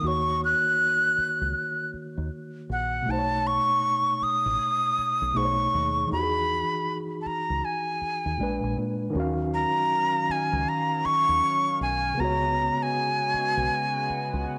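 A breathy, reedy jazz flute sits up front from the first moment of this sultry, late-night R&B excerpt, its tongued notes carrying a touch of chiff and vibrato high above the band. Beneath it, a worn, slightly out-of-tune tine electric piano plays lightly overdriven, as if heard through built-in speakers, with a cassette-tape character. A deep dub fingered electric bass anchors the low end with a dark, round, foam-muted tone played direct and amped. The 4/4 groove carries a swung sixteenth-note feel as the harmony drifts through Ebm7, B9, Emaj9 and Bb7b9. At 9.1 seconds a shimmering, retro pulse-width pad with chorus joins in gentle-attack sustained chords as the progression settles on Ebm9 and then Db7sus4, all framed by moderate spring reverb and the hazy intimacy of a home cassette recording.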